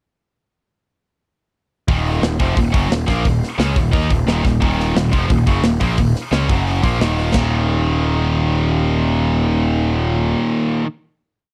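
At 1.9 s a double-tracked, distorted electric guitar, a growly fuzz bass and a tight drum kit of kick, snare, hi-hat and china cymbal enter together. They launch a dark, heavy metal power-chord riff in Eb minor at 176 BPM, with the driving eighth-note bass doubling the guitar over a big rock groove and rolled-off cymbals. The riff moves through Gb5 to a final Eb5 chord, the drums stop at 7.4 s, and the guitar lets the chord ring until 10.9 s, all in a dry, close 1970s-style studio sound.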